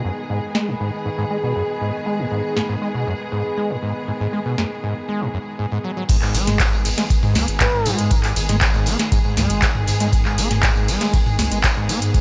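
Playful and trippy, this acid house excerpt moves at 119 BPM in a straight 4/4 around A-flat minor, cut from a longer piece. It opens with a squelchy, gritty acid bass riff up front, its resonant filter sweeping over the first 6.1 seconds, with distortion, tube saturation, subtle chorus and digital delay, while a rich, bowed string section holds smooth sustained chords and a deep, moody ambient pad with detuned sawtooth unison and built-in reverb drifts above. A booming analog drum machine comes in at 0.5 seconds with a crisp snare, metallic hats, handclaps, toms, crash and ride, overdriven and set up front in a short room. At the drop at 6.1 seconds the pad falls away and an overdriven, deep electronic kick enters, backed in the background by a mid-forward acoustic street-band kit and a jingly, vintage tambourine, while a round, dark analog bass joins just after. A breathy, mellow concert flute with vibrato and digital delay flickers in briefly near 7.6 seconds, and the strings, acid bass, pad and round bass all carry sidechain pumping, with light reverb and small room ambience around the mix.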